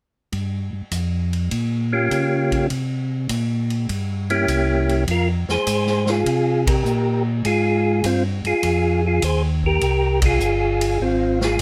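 A mellow, round, lightly overdriven tonewheel organ bass with chorus vibrato and slow rotary speaker opens this bluesy, late-night soul jazz organ trio at 0.3 s, alongside a distant, roomy big-band drum kit with a boomy kick, swinging at 101 BPM in F minor over Gm7b5 and C7b9 before settling on Fm7; at 1.9 s a dark, clean, percussive tonewheel organ melody with third harmonic percussion and fast rotary speaker enters up front, and band accents at 6.6 s and 10.1 s punctuate the light reverb of this passage cut from a longer piece.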